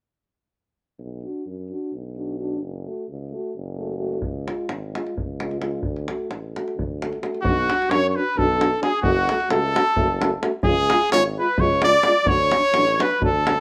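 A straight 7/8 pulse at 260 BPM drives this fiery, bittersweet Balkan brass band piece in B dorian sharp4, cycling through Bm, F#m, C# and D: a distant, vibrato-laden tuba anchors the bass from 1.0 seconds beneath a background euphonium with a vintage tint and a mellow, smooth-topped French horn, a deep, band-limited davul joins at 4.2 seconds, and at 7.4 seconds a clear, up-front trumpet takes the classical-style melody over a very quiet flugelhorn second line, inside a wet studio reverb with a rough home-demo character.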